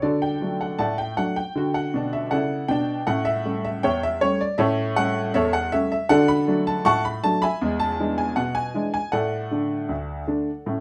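Playful and lively, this short ragtime piano piece moves at 79 BPM in a straight 2/4 feel, set in D major. A single upright piano plays solo throughout its 10.8 seconds, spanning from D2 up to C#6. Its tone is worn and woody, slightly detuned and natural, sitting up front in the mix. The harmony moves from D to A7 at 3.1 seconds, back to D, then through E7 to a closing D/A at 9.1 seconds. A moderate small-room reverb surrounds the sound, and the clip is cut from a longer piece.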